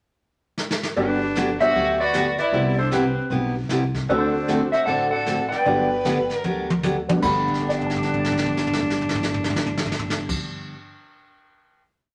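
This short western swing piece in G major bounces along at 153 BPM in 4/4 with swung eighths, carrying a playful, down-home mood. The brushed drum kit opens alone at 0.6 s with a quick fill, sweeping on the snare with dark cymbals and a boomy kick. At 1.0 s the band joins: a clean, slide-played lap steel carries an up-front, motif-based melody in period phrases, partly doubled in thirds, while a bowed fiddle with light vibrato adds a smooth harmony line, mostly in sixths. Underneath, a bright dreadnought acoustic guitar picks four to the bar, a detuned, jangly upright piano comps with syncopated close voicings in the background, and a woody, growly pizzicato upright bass plays a two-beat root-and-fifth pattern with walk-ups. The tune passes through Gmaj7, Cmaj7 and D7 before settling on a final Gmaj7 chord at 7.2 s, with the drums filling beneath it, all bathed in a wet studio reverb.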